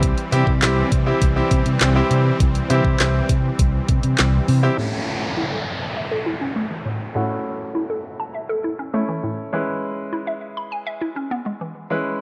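Dance-pop at 101 BPM, carefree and euphoric, opening straight into a drop where a bright, brilliant grand piano, a soft detuned supersaw and a dark, round fingered bass pump under sidechain alongside a smooth R&B kit with knocking kick, woody snare, handclaps and hi-hat. By 4.8 seconds the bass, drums and supersaw have dropped out, and a hollow, bouncy square-wave pluck takes over with arpeggios through chorus and slapback echo, joined by a downlifter and riser during a filter sweep while the low-passed piano carries on. The chords move from C to A and then to E6 at 9.5 seconds, all in a light reverb, in this short cut from a longer piece.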